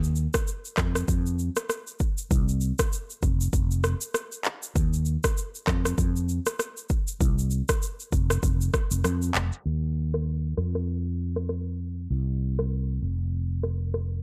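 A swung sixteenth-note groove at 98 BPM in 4/4 drives this mellow, hypnotic afrobeats excerpt, with an electronic afro-pop drum kit up front laying down a deep kick, handclaps, rim click and shaker. A dark, round and punchy fretless electric bass sits alongside it, amped and up front, holding down the low end throughout. A digital ambience shaded by a low-pass filter colours the mix, and a filter sweep runs from 9.7 seconds to the end as the music moves into its second section.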